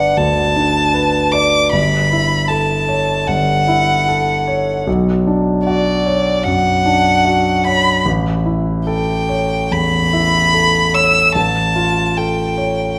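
The recording sits in a wet recital hall, where a 1.4-second reverb surrounds a violin and a concert grand piano that both stand up front. This impressionist classical duo is luminous and pastoral in mood, moving at 75 BPM in 4/4 with uneven beats and rubato, tuned to A4 = 441 Hz. A single bowed violin carries the melody between D5 and E6, its warm tone smooth and even, with vibrato. The piano accompanies from G1 to D5, intimate and polished, with deep bass, long sustain and audible action noise. The harmony moves from Gadd9 through F#m7/G, Bmadd9 and A9 to Aaug7 over this 13-second passage, which is cut from a longer piece.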